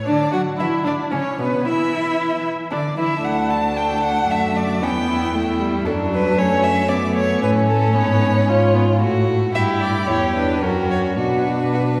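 Cheerful and spirited, this quick classical-period movement for string quartet in B minor moves at 113 BPM in a rubato 3/4, briefly touching F-sharp minor before settling back on B minor at 11.2 seconds. An up-front first violin carries the rich, expressive melody with vibrato, soft attacks and portamento, while a close second violin adds a warm, expressive second line with similar vibrato and slides. Beneath them, the viola's smooth, even accompaniment and the cello's intimate bass, with its light vibrato, sit close and present inside the long, wet reverb of a church or concert hall.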